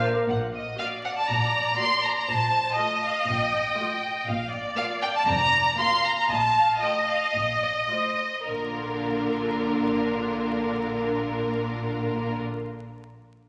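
A quick, graceful and cheerful classical-period movement for symphony orchestra in Bb major, moving at 103-122 BPM with a rubato feel, this fragment of a longer piece sets an up-front, smooth violin section's melody over distant viola accompaniment, a close, lush cello section and a soft-attacked, expressive double bass section, joined at 0.3 s by a focused second violin line with vibrato, slowing from 3.3 to 8.5 s before a new section begins, all bathed in a wet scoring-stage reverb with a layer of vinyl crackle.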